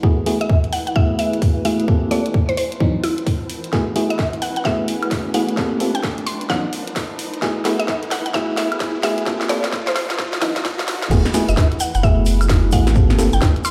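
A tight, up-front electronic kick, a thick, saturated sub bass with sidechain pumping, glassy, bell-like FM electric piano stabs under a filter sweep and a blurred granular cloud pad in the background open this soulful, moody two-step garage excerpt at 130 BPM, joined moments later by a cracking-snare house kit and a woody, round mallet-like synth pluck with 12-bit grit and tape echo carrying the melody. Over swung 16ths in F# minor, the chords cycle through F#m11, Gm11 and C#m11 while a background riser and a drum fill drive the build-up. The drop arrives at 11.1 seconds with a grainy tube shaker, all set in a moderate plate reverb and the echo of a bare stone room.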